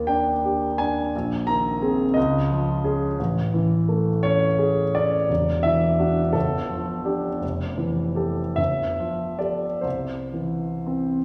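A clear concert grand piano carries this brief solo passage alone, its intimate, up-front sound revealing audible action noise along with a deep bass that reaches down to E1, while the upper register extends to Bb5. The music is impressionist classical piano, hazy and serene, moving in a slow, rubato 6/8 at roughly 37 to 59 beats per minute counted in dotted quarters. Its drifting harmony passes through colorful chords such as Ebmaj7, Bb11, Dbadd9 and Amaj7, then turns to open suspended sounds on Esus2 and Gsus2, a lush Fmaj9, and comes to rest on C at 9.8 seconds. The polished instrument, tuned to A4 = 441 Hz, sits in a recital hall whose wet reverb lingers for about 1.4 seconds, adding a sense of small-room ambience around the tone. Lasting just 11.2 seconds, the fragment is cut from a longer piece.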